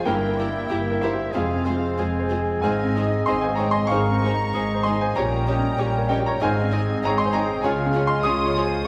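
Tragic and brooding, this fragment of a romantic movement for piano and orchestra moves at 95 BPM in 4/4 with a rubato feel, the clear, up-front baby grand carrying the melody alongside a soft-attacked violin section bowed sul tasto high above. Around them, a bright clarinet, an airy flute group and a smooth oboe weave second lines with a darker, intimate violin section, while a mellow bassoon and a very quiet, distant viola section accompany, a mellow, very quiet French horn section sustains chords, and woody double basses and close cellos anchor the bass. Chords move from Edim/G through Fm and Ab to Gdim/Bb, settling on Db at 7.6 seconds, all bathed in a wet scoring-stage reverb.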